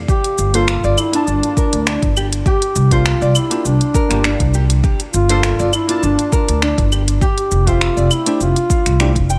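A deep electronic kick and a produced kit of cabasa, claves, finger snaps and smooth hi-hats set a lightly swung 16th-note groove at 101 BPM in 4/4, laying the base for this earthy, hypnotic organic downtempo passage in G dorian, cut from a longer piece: a woody pizzicato upright bass sits up front with tube saturation and sidechain pumping, a soft, detuned chord stab with chorus, delay and pumping stays in the background over Gm7, C7sus4 and Fmaj7, a warm nylon-string guitar fingerpicks delayed arpeggios, and a dark solo duduk carries the folk-style melody with vibrato, scooped notes and digital delay, all set in studio reverb.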